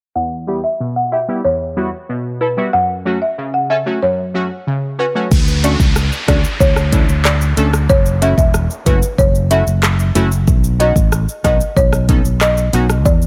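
This is a straight 4/4 dancehall groove with a tough, sultry mood, cut from a longer piece, and it opens with a woody, dry marimba melody over bright, punchy sawtooth synth brass stabs that carry a filter sweep, chorus and sidechain pumping, all set in a digital ambience. At 5.3 seconds an up-front electronic afro-pop drum kit enters, with a deep kick, smooth hi-hats, handclaps, rim clicks, shaker and crash cymbal, alongside a growly, amped fretless electric bass. An electronic downlifter sounds until 10.5 seconds as the harmony moves through Dmaj7(no3), F#m7 and Badd9.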